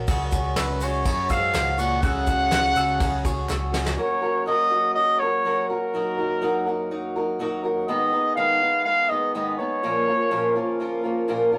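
This hopeful indie folk excerpt at 123 BPM in F# major opens with a boxy, picked old ladder-braced acoustic guitar, woody mandolin arpeggios in the background and a round, punchy picked electric bass. A soft brush drum kit with a fat snare, a grainy tube shaker and very quiet, crisp group handclaps join almost at once, and from 0.6 s a mellow, distant trumpet with light vibrato carries the melody, briefly supported by a smooth-topped French horn second line. After a drum fill, the bass, drums, mandolin and percussion have all stopped by 4.0 s, when a reedy, breathing hand-pumped harmonium takes up sustained chords beneath the guitar and trumpet, all captured in a rough rehearsal-room recording with moderate reverb.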